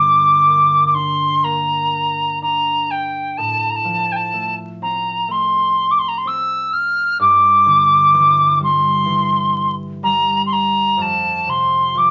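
Light reverb and vinyl crackle surround this 12-second excerpt, with a top end that rolls off above 7.5 kHz. It is a haunting, longing Celtic slow air in 4/4 at 62 BPM, played rubato and tuned to A4 = 441 Hz. A pure, up-front wooden whistle carries the melody with vibrato and a chiff on its crisp attacks, while a mellow concert harp, fingerpicked and ringing, sits lower and quieter beneath it through Gm, F/A, Cadd9/G and F.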